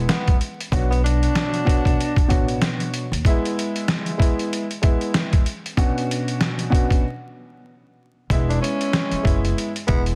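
A growling tenor saxophone carries the melody in this short excerpt of gritty, tough boom-bap hip-hop, its raspy, breathy subtone touched with vibrato, scooped notes and a digital delay. A dark baby grand piano plays accompaniment throughout, sitting up front with a worn, intimate sound and audible action noise. A pitched-down, compressed sampler-style drum kit drives the swung groove with a thumpy kick, a medium-tuned snare and hi-hat, its tape-warm character placed prominently in the mix. A woody pizzicato upright bass and the saxophone both fall away by 3.2 seconds, leaving piano and drums alone for a break until 8.3 seconds, when the bass returns, with the saxophone following shortly after. The harmony moves between E and B minor add nine, and the dense, heavily limited mix carries studio reverb and vinyl crackle.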